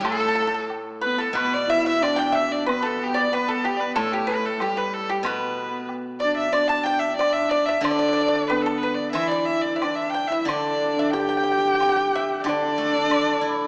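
A rubato 4/4 pulse around 92 BPM carries this graceful, pastoral piece of Chinese traditional chamber music, cut from a longer work. A bright, focused erhu carries the melody up front with vibrato and portamento, while a husky, nasal horsehead fiddle with an airy bow plays a close, intimate second line alongside a dry, percussive fingerpicked pipa set in the background. A silvery, ringing steel-string zither supplies accompaniment and a woodblock sits behind the ensemble, heard through a moderate concert hall reverb with a small speaker sound.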